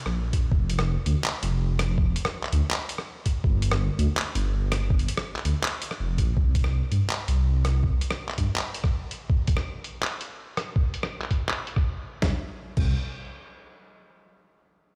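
A dark, heavy stretch of half-time drum and bass opens on a drop, with a deep, rumbling detuned saw bass and a gritty boom bap sampler-style kit of hi-hat, snare, rim click, handclaps and crash, its hats, snare and cymbals muffled by a low-pass filter, joined almost at once by a compressed, thumpy, pitched-down electronic kick. The beating unison bass sits up front with a fast attack and sustained tone, dropping out at 8.5 seconds and returning briefly at 12.2 seconds. Both drum parts carry a tape-warm, sampler-style character, and the whole piece sounds as if played on a big system in a bare stone room.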